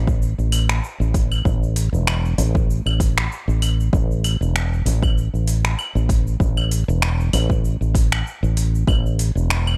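Organic downtempo with an earthy, mystical mood, set in 4/4 with a light swing on the sixteenths. A dark, round fretless electric bass sits up front from the very start, its punchy, direct tone pumping under sidechain compression as it holds to the low register. At 0.1 seconds a deep house drum kit joins with claves, finger snaps, shaker and metallic hats, overdriven and re-recorded in a large room, sitting further back in the mix. An electronic kick drum enters at the same moment, a deep, layered, overdriven thump that drops out at 9.0 seconds while the bass and kit carry on to the end of this short section cut from a longer piece. The overall sound is dry, with little reverb.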